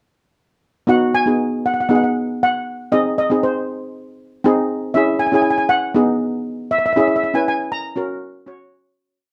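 Calypso with a brooding, cool mood: a short, complete piece for two steel pans that runs through a single verse before fading out from 7.0 seconds. The lead pan, played with soft rubber sticks, carries a dark, smooth melody built on motifs in period phrases. Beneath it, cello pans with medium rubber sticks play syncopated triad chords, both parts mellow, shimmering and up front in a close, detailed sound with light reverb.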